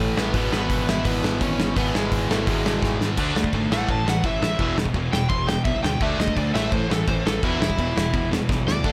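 Rebellious and energetic, this short punk rock cut charges ahead at 169 BPM in a straight 4/4, clearly lifted from a longer piece. An overdriven semi-hollow guitar carries the melody with a warm, hollow-body tone, breaking into a solo at 3.2 seconds as the music moves from its opening passage into a new one built on D5, A5 and E5 power chords. Underneath, three bright, picked distorted electric guitars stack the riff, one sitting in the background and two very quiet, the faintest of them double-tracked and compressed. A fuzz-drenched picked electric bass growls low, while a loose indie drum kit enters at 0.2 seconds, up front with a punchy kick, medium-tuned snare, hi-hat and crash in a small, pumping room. Drum fills arrive around 2.8 and 8.5 seconds, and light reverb plus a faint mains hum give the recording a raw, garage-like edge.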